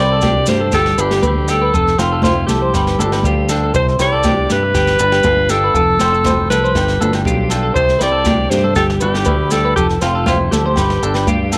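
Highlife guitar band music at 120 BPM in a straight 4/4, carefree and danceable, heard as a short cut from a longer piece. A clear, smooth-topped alto saxophone carries the jazz-style solo melody up front from the start, over a chord cycle that moves from Csus2 through G, Fmaj7 and G7. A clean semi-hollow electric guitar picks warm arpeggios coloured by analog chorus, while a bright, twangy electric guitar at the edge of break-up sits in the background with picked accompaniment. A punchy, direct fingered bass anchors the low end, and from 0.2 seconds a polished brush drum kit adds a boomy kick and medium-tuned snare in an airy studio room. Ringing agogo bells, grainy close maracas and distant, high-tuned congas played with soft hands fill out the percussion, all under a moderate spring reverb with a faint mains hum beneath.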